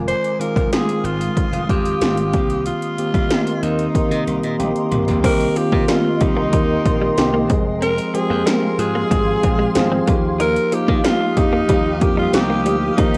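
A straight 4/4 pulse at 93 BPM comes from up-front, overdriven 80s electronic pad drums with a punchy kick, gated reverb on the snare and toms, and metallic hats, while a glassy slap bass and a mellow tine electric piano carry this nostalgic, dramatic 1980s-style pop excerpt in F minor over Fm7, Cm7, Fm and Ebadd9. A raspy, gritty alto saxophone leads the melody with clear vibrato over a cloudy, evolving granular pad whose detuned, blurred chords bloom slowly through plate reverb. After a drum fill at 4.6 seconds, a very quiet, scooped clean electric guitar picks out a riff from 5.2 seconds, all set in a wet studio reverb and captured as a home recording on cassette.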